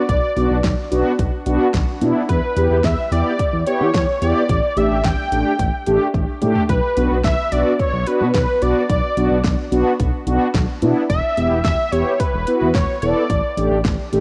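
A straight 4/4 pulse at 109 BPM drives this cool synth-pop excerpt in B minor, with an electronic pop drum kit of punchy kick, fat snare, metallic hats and toms sitting up front, its layered sound carrying a cassette-tape tint and a drum fill between 6.1 and 6.7 seconds. Beneath it, a smooth synth bass built from sawtooth and square waves glides between notes with portamento, dark and sustained across a low range from E1 to E3. Mellow synth brass fills the middle register with round, detuned sawtooth tones, a filter sweep and chorus giving it a brassy, dark body. Over the top, a thick, bold unison lead mixes detuned sawtooth and triangle tones with vibrato, singing the melody between B4 and G5 until 13.8 seconds. The harmony moves through Bm, Em and A7sus4 twice, and a lush hall reverb of 2.3 seconds wraps the home-recorded cassette sound in a driving mood.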